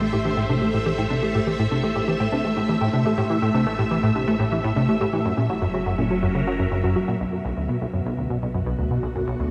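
A straight 4/4 pulse from a punchy, funky analog bass riff, its filter sweeping until 7.2 seconds, anchors this cosmic, mysterious slice of sequencer-driven ambient space music, where bright, swirling phased string-machine chords move from Am through F#7 to Bm over a nasal, evolving analog drone, while warbling, lo-fi pluck arpeggios and a resonant, bubbling stepped-filter texture sit in the background until the texture drops out at 7.2 seconds, all bathed in a huge, wet reverb.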